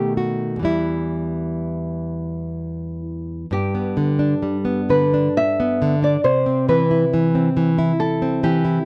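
In a loose, rubato three-four time, this romantic duo for two nylon-string guitars unfolds with a melancholic, solemn air. One nylon-string guitar plays fingerpicked accompaniment throughout, its tone dark and small, moving from B7 to Em in the opening passage. At 3.5 seconds a second nylon-string guitar enters with the melody, fingerpicked in a warm, classical voice that sits up front, while the harmony shifts to G and then C. The recording is dry and close, with little reverb, in the manner of a 1970s studio session. The fragment is cut from a longer piece and ends at 8.8 seconds.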